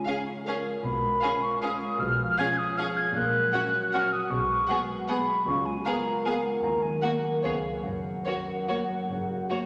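This short orchestral excerpt sits in a wet concert hall, its long reverb giving the classical scoring an elegant, sweeping glow in a flexible, rubato triple metre. An up-front silver flute, airy and hollow with tongued notes and vibrato, carries a high second line above the violins' lush, smooth melody, while a second, more distant violin section adds its own line beneath. A French horn section holds mellow, tight sustained chords, and a ringing, fingerpicked concert harp spreads arpeggios from low in the bass up into the middle register. Violas fill in the accompaniment in the background, and from 0.8 seconds a dark, expressive cello section with portamento joins a focused double bass section on the bass line. The harmony moves through dominant-seventh colours before settling on F# at 7.8 seconds, near the end of the cut.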